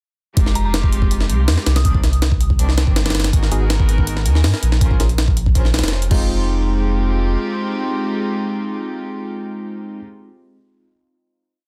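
A dark, nostalgic drum and bass jungle piece where a gritty, pitched-up chopped breakbeat with a thumpy kick and a thick, saturated sub bass drive the drop from 0.4 seconds, beneath distant, reedy chamber strings with a lo-fi sampler grit holding chords moved in parallel, a soft FM bell with chorus and dub echo offering short phrases in the background, and a barky electric piano with analog chorus and dub echo adding sparse echoing stabs from 3.5 seconds that ring with the strings through the final hit until 10.0 seconds.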